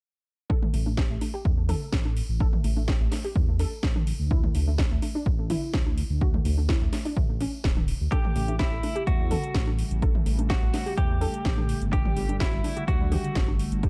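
A dark, warm digital ambience frames this uplifting, hopeful progressive house excerpt at 126 BPM in A mixolydian, where a punchy kick, cracking snare and metallic hats accompany background congas and toms and a deep, rumbling detuned saw bass, the congas, toms and bass all pumping beneath a soft, round pluck arpeggio with chorus and tape echo, before a bright, twangy clean electric guitar melody arrives at 8.1 seconds and an evolving wavetable pad with phaser and reverb joins at 8.9 seconds over chords moving from A5 through Dsus2 and A7 to Gsus2.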